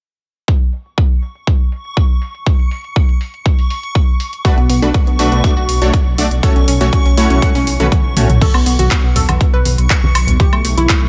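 A punchy, overdriven electronic kick sits up front in this expansive, driving progressive house excerpt in B minor at 121 BPM, arriving at 0.5 seconds together with a layered big-room dance kit of crash, handclaps, hi-hat, toms and woodblock, its tops darkened by low-pass filtering and a filter sweep that runs until a drum fill at 7.4 seconds. A reversed, granular backwards swelling texture drifts in high above with a dreamy, soft-edged haze and its own reverb. At 4.4 seconds a glassy, crystalline wavetable pluck spins arpeggios through chorus, cassette tape colour and tape echo, while a full-bodied supersaw stab punches chords over a Bm7 to F#m/B progression, and from 4.6 seconds a deep, rumbling detuned saw bass anchors B1 underneath. When the music moves to Bsus2 and A/B at 8.4 seconds, the stab drops away and close, acoustic-sounding congas and woodblock slip into the background. Sidechain pumping makes the bass, pluck, stab, swelling texture and hand percussion breathe around the kick, all set in a light reverb.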